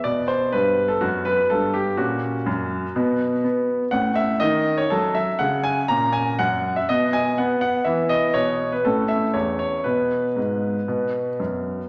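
A clear baby grand piano carries this graceful, elegant classical-period sonatina alone from start to finish, spanning E2 to A#5 across just under 12 seconds cut from a longer piece. The piano sits up front with an intimate, natural character, its long sustain blooming and the mechanical sounds of its action plainly audible. The music moves at 122 BPM in a straight 4/4, tuned slightly bright to A4 = 441 Hz. The harmony opens on B5 and passes through F#/A# and F#m/A, with brief unharmonised moments around 3.0 and 6.9 seconds, before E5, A and G#m lead back to B5 to close the section. A wet recital hall reverb with a decay of 1.7 seconds surrounds the instrument, lending the performance a sense of generous space.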